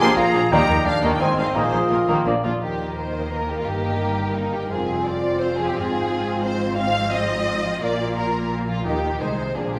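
An expressive violin section sits up front, its lush, singing vibrato carrying a second line in this cheerful, spirited orchestral classical passage in triple time, cut from a longer piece. A smooth, symphonic violin section holds the melody from the background, while a viola section and a rich cello section fill out the middle and low strings above a dark, soft-edged double bass section that glides with portamento. A ringing, thumb-plucked concert harp plays arpeggios throughout, and a mellow, roomy French horn section enters at 0.5 seconds to sustain chords. For the first few seconds the winds add color: a distant cor anglais, a silvery, pure flute with crisp attack, a very quiet clarinet, a clear bassoon, and a soft tuba doubling the bass. All of these drop out by about 2.5 seconds, leaving the strings, harp and horns to carry the section that begins at 2.6 seconds. The whole ensemble is bathed in generous scoring-stage reverb, lending a full, spacious glow.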